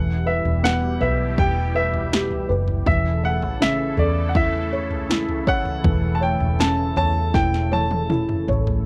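A clear, polished baby grand piano carries the melody up front in this hopeful, heartfelt pop ballad, played high in its register over a straight four-beat pulse. Beneath it, a felt-muted upright piano supplies soft, intimate accompaniment with audible action noise, while an airy, detuned sawtooth pad with chorus holds sustained chords that slowly evolve. A dark, round, foam-muted electric bass anchors the low end, and a deep house drum kit of deep kick, punchy snare and toms enters at 0.5 s, its electronic, layered sound overdriven and re-recorded in a large room. The harmony moves from E minor to A over E, and a drum fill starting at 7.3 s closes the passage. The overall sound is dry and close, like a 1970s studio recording, and the piece is cut from a longer work.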